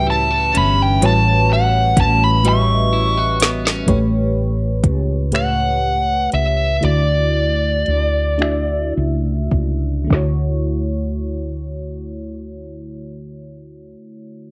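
Softly filtered and lightly reverberant, this brief slice of slow six-eight R&B sits in D major at around 34-42 BPM, with a tender, sensual mood. A fuzz lead guitar carries the melody up front, its distorted, picked tone thickened by slapback echo and plate reverb, while a clean, compressed electric guitar adds a second line that stops at 4.5 seconds. A mellow FM electric piano supplies round, dark, decaying chords with a faint noise layer and chorus, and a growly, hollow-body fretless electric bass sits punchy and close under a lush chorus. The electronic drum kit enters at 0.5 seconds with finger snaps, metallic hi-hat, a soft kick and a woody snare, all with a tape-tinged, produced feel. After a drum fill, the music slows down and a filter sweep runs from 3.9 seconds as the harmony moves from A13 to A7 and settles on Dmaj9.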